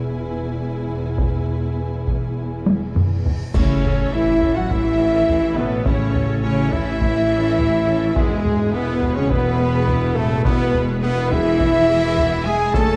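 An excerpt of dark, heroic orchestral film score at 104 BPM opens with lush bowed strings, violins, violas, cellos and double basses, beneath a distant, dark French horn section holding sustained chords, before hard-stick taiko drums enter at 1.2 seconds and fill into a reverse cymbal and huge impact. At 3.5 seconds bright clash cymbals and concert bass drum strike and a very quiet mellow tuba begins reinforcing the bass. At 3.6 seconds the band accents together, a punchy trumpet begins stabbing, and an airy flute ensemble joins the second violins on a supporting line. The whole sits in a roomy scoring-stage reverb, with the horns and taiko most prominent over strings that stay in the background.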